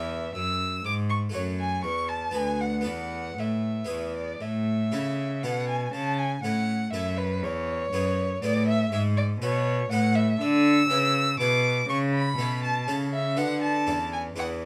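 A warm violin with vibrato and expressive portamento carries the melody in this radiant, dance-like baroque-style sonata excerpt in A major, moving at 120 BPM in 3/4 over a clear, smooth cello bass and a brilliant, plucked Flemish-style harpsichord with octave strings, all set in a small room's moderate reverb as the harmony settles from E onto A at 4.4 seconds.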